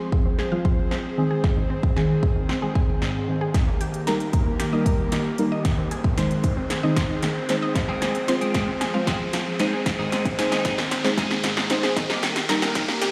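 A straight 4/4 house groove at 114 BPM drives this confident, energetic dance-pop build-up, cut from a longer piece, with a punchy kick and snare and crisp hats sitting up front while a drum fill and filter sweep run through the whole passage. Deep, mellow chord stabs with a dark, wave-folded edge move through Fm, Ab and Eb over a breathy, airy pad that pumps with the sidechain, while a lush, detuned unison pluck spins arpeggios through dub echo and a background riser enters at 2.3 seconds. At 7.8 seconds a bright, twangy twelve-string electric guitar riff joins in the background with analog chorus, the mix set in a spacious hall reverb that carries the character of a big sound system playing in a bare room.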